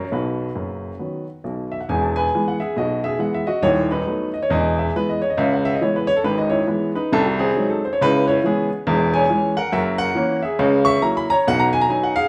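Exuberant and swinging, this short stride piano passage in E major moves at 138 BPM with a lilting swing feel, cut from a longer piece. A clear, natural-sounding baby grand plays solo and up front from 0.0 to 12.3 s, its short-sustained notes spanning from deep bass to bright upper register, as the harmony travels through C#m7 and F#7 before settling on B. A large, wet studio reverb surrounds the playing, giving it the feel of a live performance in one large room.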